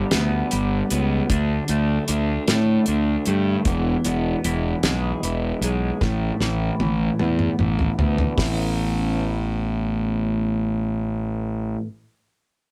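A bright, twangy twelve-string electric guitar riff under a phaser and filter sweep opens alongside a round, fuzz-overdriven fingered bass in this hazy, trippy psychedelic rock excerpt at 51 BPM in 6/8 in A mixolydian, moving through G, D5, E and Asus2 while a damped 70s drum kit with a fat snare and tight kick plays a fill from 6.0 seconds and drops out at 8.6 seconds, leaving guitar and bass on Aadd9 in a rough rehearsal-room sound with light reverb.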